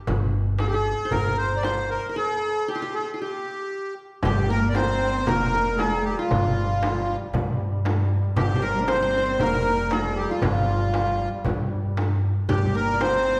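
Longing and soulful, this Arabic maqam ensemble piece, cut from a longer work, moves in a straight four-beat feel. Upright bass, darbuka and frame drum open together: the bass is woody and growly, played pizzicato on steel strings, while the metal-shelled darbuka sits crisp in the background under soft hands and the frame drum sounds vintage and band-limited. At 0.6 seconds the reedy accordion takes the melody up front, sweet and airy with light tremolo tuning, and a bright-edged, plectrum-plucked qanun with triple strings carries a second line. A break arrives at 2.2 seconds. From 4.2 seconds a dark bowed cello joins in the background with vibrato, portamento and a soft attack, and a mellow duduk holds a drone with scooped notes and slight vibrato in a folk style, all set in a resonant recital hall reverb.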